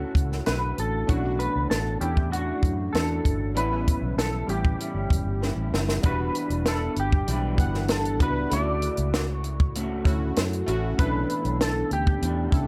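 A clean, twangy lap steel carries a nostalgic, dreamy indie bedroom-pop melody from the first moment, lifted by ensemble chorus and analog delay, over a slightly broken-up picked electric guitar soaked in lush chorus and vibrato and round sawtooth keys with a filter sweep, chorus and phaser. A dark, foam-muted fingered bass sits up front beside a dry, compact cocktail kit with a punchy kick and high-tuned snare, which enters at 0.1 seconds and plays a fill from 5.4 to 6.0 seconds before the second section. Dmaj7, Bm11 and A7 give way to Em7 and back, all within a small room's light reverb.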